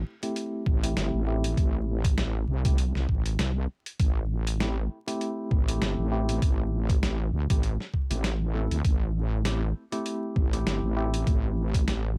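A dry recording with a crackling vinyl surface frames this swaggering, gritty glitch hop excerpt, cut from a longer piece and held on a single Am7 chord in A minor pentatonic. At 99 BPM in 4/4, with a light swing on the sixteenths, a heavy wobble bass sits up front from the opening second; its detuned sawtooth and sine tones are thickened by chorus and tube saturation yet keep a mellow edge. A compressed, pitched-down electronic kick arrives at 0.7 seconds with a thumpy, tape-warm weight. Already playing from 0.2 seconds, a sampler-style boom bap kit adds hi-hat and a medium-tuned snare. A clean tine electric piano plays stabs through a combo amp, shaped by medium tremolo, sidechain pumping, tape echo and a low-pass filter that sweeps across the whole passage.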